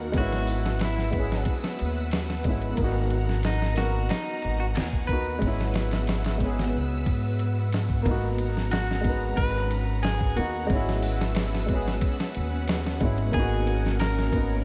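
Dark and cinematic, this trip hop excerpt moves at 91 BPM in G# minor, with a gritty, compressed sampler-style drum kit and a woody, pizzicato upright bass on gut strings thumping up front under chords that alternate between F#7sus4/G# and G#m9. A polished upright piano with harmonic tremolo and tape echo carries the accompaniment, while a bright, clean, picked electric guitar plays the melody through vintage 12-bit sampler grit and its own tape echo. Full-bodied string machine cellos hold mellow, chorused chords above, a very quiet, tense bowed-like drone with vibrato slips in at 0.9 s, and a lush 2.2-second hall reverb soaks the mix in a dreamy haze.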